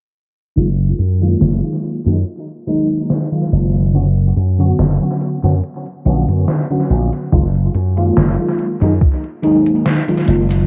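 This dreamy, faded vaporwave excerpt opens at 0.6 seconds with a round, soft FM electric piano, a punchy slap bass and a gated 80s digital drum machine entering together over a lazy, lightly swung groove. The up-front electric piano carries the chords, moving from F#maj13 to Bmadd9/F# and back. Its dark tone is coloured by phaser, ensemble chorus, cassette tape wear and tape echo, with a thin noise layer under each fast-attack, decaying note. The bright, amped bass sits up front with an envelope filter on its low line, while the drum machine's hi-hat and overdriven snare ring through gated reverb and tape echo in a small-room re-recording. A thumpy, overdriven electronic kick drum joins only from 7.3 to 9.2 seconds. A filter sweep runs across the whole passage, and an echo-heavy, low-passed mix with light reverb gives it a hazy, submerged sound.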